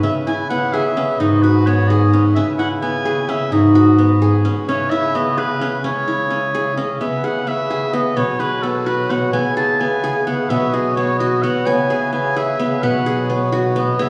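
From the first moment, a clear, present oboe sings a classical-style melody up front, while a plucked qanun spins bright-edged arpeggios from its triple strings, a mellow bass clarinet with jazz-tinged vibrato holds down the bass, and a reedy, nasal hand-pumped harmonium breathes sustained chords in the background. This is contemporary chamber music in C# minor, set in an uneven 5/8 at 258 eighth-note beats per minute with a straight feel, and its mood is hypnotic and pensive. The harmony rocks between C#m7 and G#m7 at first and settles on C#m at 5.8 seconds, then from 8.2 seconds alternates Bsus2 with C#m7. At 11.7 seconds a vibraphone struck with hard mallets, motor off, adds a metallic, ringing second line. A wet recital-hall reverb places the ensemble further back in the room, and the passage is cut from a longer piece.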